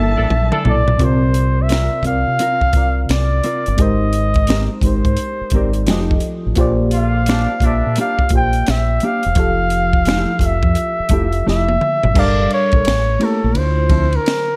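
A warm, vibrato-tinged flugelhorn with slapback echo carries the melody of this late-night, soulful neo-soul R&B excerpt over a round FM electric piano treated with chorus and phaser, a dark, clean electric guitar line in spring reverb, a deep, punchy fingered dub bass and a dry cocktail drum kit with finger snaps and a high-tuned snare, while a soft bowed string section holds chords only through the opening second and a vintage horn section adds stabs at 0.2 and 6.9 seconds.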